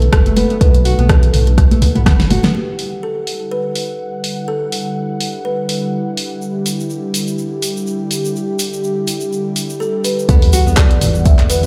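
Heard through a big sound system in a bare room with a large studio reverb, this earthy, driving afro house excerpt at 124 BPM swings its 16ths over a Bm7 moving to Em9. A woody, ringing kalimba melody with tape echo floats above a smooth, chorused analog pad whose filter sweeps from 2.5 to 10.3 seconds. Throughout, a fat-snared deep house kit with claps, hi-hat, rim click and toms keeps time, joined at the start by hard-handed congas in the background, while a fingerpicked nylon-string guitar with audible finger squeak and a dark, detuned, tube-saturated saw bass pump alongside an up-front deep electronic kick early on and return for the drop at 10.3 seconds, together with an impact, a very quiet sub drop and a grainy egg shaker that has entered midway.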